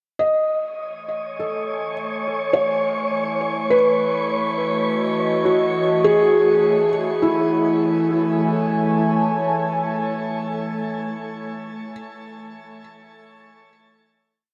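Bathed in a long, wet shimmer reverb, this weightless ambient piece in 3/4 sets a soft, felt-muted upright piano, with audible action noise and delay, playing a free melody up front over a warbly, lo-fi tape-like pad of slowly shifting chords from Amaj7 to Emaj9 and back, while a resonant drone with moving overtones fades in alongside the pad before the final chord at 7.2 seconds, thumb-plucked concert harp arpeggios ring out through delay, and an airy, breathy wind-like noise texture holds a high note until 7.3 seconds.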